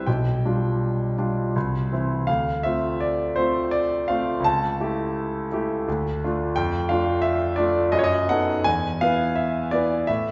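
Stormy and passionate, this brief stretch of a romantic character piece for solo concert grand piano moves at 84 BPM in 3/4 with a free, rubato feel, ranging from B1 up to A5. The piano's playing is marked by deep bass, long sustain and audible action noise, as the harmony travels from G7/B through Dm7 and A7/C# toward B7/F# and an open E5 at 8.7 seconds. A wet recital hall reverb places the listener further back in the room, and the top end falls away above 7.8 kHz.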